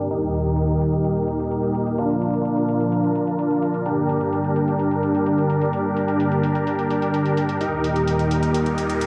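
A brief, very quiet downlifter-and-riser effect opens this euphoric, anthemic festival progressive house excerpt in G minor at 128 BPM, as a lush unison pad and a dense compressed supersaw sound together from the start. The airy, detuned pad holds sustained chords with chorus on it, moving through Eb, Bb, G minor and back to Eb, while the huge, thick supersaw plays an up-front riff through a low-pass filter and dub echo. A layered electronic hi-hat with metallic hats slips in at 0.1 seconds, sitting low in the mix under its own low-pass filtering and studio reverb. A filter sweep runs across the whole clip, shaping the drums and the pad, and a moderate hall reverb lends the track a spacious sheen. The electronic downlifter-and-riser effect returns at 8.6 seconds, pointing the music toward what comes next before the cut.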